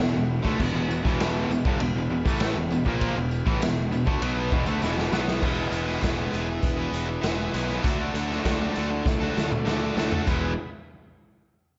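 A confident, sunny classic rock riff in E mixolydian at 99 BPM opens with an up-front, gritty garage drum kit, a round, fuzzed-out picked bass and three guitar riffs: a bright overdriven riff, a tight distorted part in the background, and a very quiet double-tracked overdriven guitar that drops out at 5.4 s. Underneath, a very quiet, shouting tonewheel organ holds sustained chords through a slow rotary speaker, while a jingly tambourine slips in at 0.8 s. Drum fills mark the section changes as the harmony moves from E to Dadd9 at 7.8 s and back to E, all set in a small room with light reverb.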